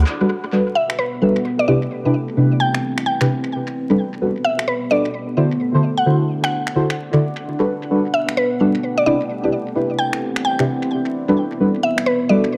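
Bouncy and soulful, this short cut from a longer two-step UK garage track swings its sixteenths over a looping progression of lush major-ninth chords with a brief dominant turn. A deep, dark ambient pad sits low in the background from the very start, its vintage, warbling tone thickened by chorus and its own reverb. Up front, soft, wave-folded chord stabs strike with a fast attack and decay away, shaded by chorus, phaser and tape echo. A woody, round mallet-like synth pluck carries the melody from 0.8 seconds, full-bodied and percussive, with chorus and tape echo trailing each note. Layered electronic finger snaps mark the groove quietly, their tape echo sitting within a spring-reverb ambience flecked with vinyl crackle that keeps the whole mix drenched in repeats.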